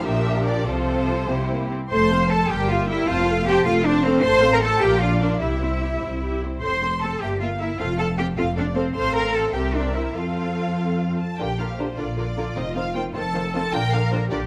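A quick, cheerful and spirited classical-period movement for string orchestra in 6/8 at 95-106 BPM with a rubato feel, moving from F major into Bb major at 11.4 s. Throughout, a rich, somewhat distant violin section carries the melody over a second violin line with a smooth top, warm violas colored by portamento, a clear, even cello section, and a focused, up-front double bass section, all bowed with vibrato in a lush ensemble sound captured by close, detailed microphones with light reverb in a short excerpt cut from a longer piece.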